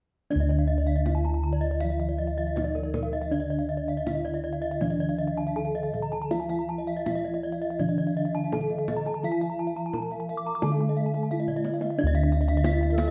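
Ceremonial and brilliant, this short cut from a longer Balinese gamelan piece in D pelog moves at 80-90 BPM, with a soft, mellow bronze metallophone melody, a lower mellow metallophone accompaniment, two higher metallophone arpeggio lines struck with wooden mallets (one airy, one dry and full) shimmering with paired-tuning beats, dark, round bossed gongs up front carrying the bass, and tight kendang adding a drum fill at 11.5 seconds before a bright, airy bamboo xiao with vibrato slips in at 12.9 seconds, all in light reverb with close, detailed miking.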